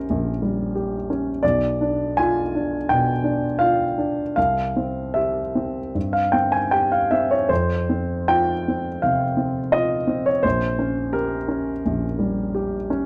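A close, natural-sounding baby grand carries this brooding, stormy romantic character piece alone in 4/4, its rubato phrasing and short-sustained notes spanning Bb1 to G#5 as the harmony turns from shadowy diminished chords toward C and a bare F5, all set in light reverb with a dark, warm production in this 13.1-second excerpt from a longer work.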